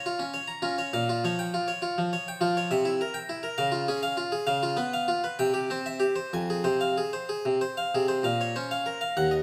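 Close, detailed microphones catch every pluck of the harpsichord, set up front against a moderate concert hall reverb that lends the sound an airy halo. This is a short passage cut from a longer classical piece, a baroque-style suite movement in 6/8 metre. The solo harpsichord, a bright Flemish-style instrument with one set of strings, plays alone from start to finish, reaching from Eb2 up to Bb5. The mood is grave yet flowing, and the rubato lets the phrases breathe and bend. The harmony moves through darkened chords, settles on F minor at 6.3 seconds, and turns back toward B-flat minor at 8.2 seconds as the opening material begins again.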